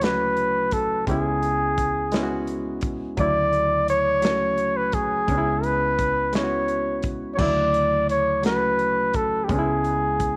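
A breathy flugelhorn carries the melody up front, its jazz-style phrasing marked by scooped notes, light vibrato and a tape echo that trails behind it. This is a slow, sultry six-eight R&B piece at 57 BPM, cut from a longer work, with a yearning mood that rests on an alternation between Dmaj9 and C#m7. Beneath the horn, a reedy, barky electric piano plays the accompaniment with light overdrive, sounding bright as if through its built-in speakers. A woody fretless electric bass, round and growly with a subtle chorus, holds the low end. A soul drum kit recorded in a small room gives a dark, smooth pulse with a punchy kick, medium-tuned snare, hi-hat and dark crash cymbal, all set in light studio reverb.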